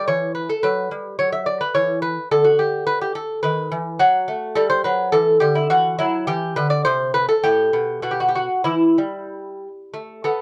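A dry, dark recording brings an up-front solo lute to the fore, its delicate fingerpicked gut strings, some of them octave-doubled, sounding a solemn, introspective baroque-style dance in 3/4 at a rubato 92-109 BPM that settles into E minor from 3.4 seconds, a short passage cut from a longer piece.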